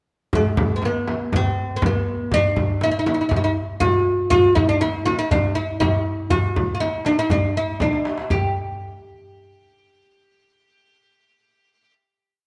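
A crisp, distant metal-shell darbuka and a deep, compressed, saturated frame drum open this passionate, stately Arabic maqam ensemble piece in G maqam huzam at 120 BPM in a straight 4/4, both playing low and high stroke patterns, before a woody, fretless, plectrum-plucked oud with double strings enters up front at 0.4 s with an ornamented modal melody; a drum fill at 7.8 s ends the percussion by 8.5 s, and the oud's final note then sounds alone in a moderate stage reverb until 11.9 s, all captured by close, detailed microphones.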